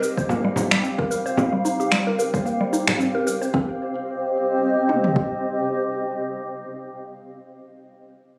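Organic downtempo at 111 BPM in 4/4, this short cut from a longer piece has a mystical, warm mood, with a light 55% swing on the sixteenths and a C minor pentatonic colour. A cloudy, evolving granular pad holds sustained chords through 7.0 s, its slow attack and long release blurred by built-in reverb and gently pumped by sidechain. Over it, a woody, round mallet-like synth pluck plays arpeggios with a fast, decaying attack, shimmering through chorus, phaser and digital delay until 3.8 s. The rhythm comes from electronic cabasa and finger snaps, a deep house kit of punchy kick drum and toms entering at 0.2 s, and an acoustic frame drum sitting close in the mix. The harmony moves from C7 with the third omitted to C minor at 3.5 s, and the whole is wrapped in a moderate digital room reverb with a slightly roomy, phone-captured character.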